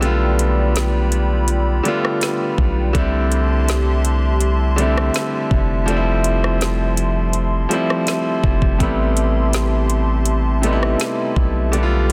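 A dense, heavily limited modern master with digital ambience frames this moody, longing contemporary R&B excerpt, cut from a longer piece, at 82 BPM in straight 4/4 and A minor, tuned to A4 = 436 Hz. A bright, polished concert grand piano sits up front with brilliant presence, playing an accompaniment part between C3 and F4 throughout all 12.1 seconds. Beneath it, a long, sine-based 808-style bass with a fast attack and decaying tail holds deep notes from F1 to C2, also up front. A hollow, airy, flute-like pad with a slow attack and long release spreads sustained chords from F3 to C6, treated with chorus and sidechain pumping. A produced electronic R&B kit adds a knocking kick, woody snare, rim click and metallic hi-hats. The harmony moves from G7/B to C6 at 2.9 seconds, Fmaj7 at 5.9 seconds and Am7 at 8.8 seconds.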